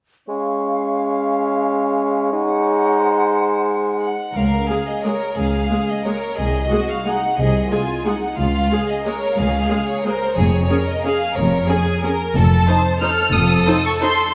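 A wet scoring-stage reverb surrounds this sweeping, festive classical ballroom waltz, its uneven rubato beats swaying in three. At first a bright clarinet, a dark cor anglais and a pure-toned small flute group share second lines over an up-front, mellow bassoon. The strings take over from 4.0 seconds, when a close chamber violin section begins carrying the intimate sul tasto melody with light vibrato. Shortly after, a rich studio violin section and a distant, lush viola section fill the middle, and an expressive cello section with portamento joins a smooth symphonic double bass section underneath.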